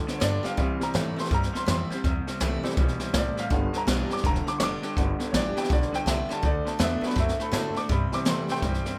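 A dry-sounding excerpt of upbeat, rollicking rockabilly with a swung feel, where a clear upright piano, with audible action noise, takes the solo throughout, backed by a twangy, slightly broken-up electric guitar riff through a small old amp, a full-bodied steel-string acoustic guitar picking in the background, a thumpy gut-string upright bass played pizzicato, and an up-front brushed drum kit with a high-tuned snare and punchy kick.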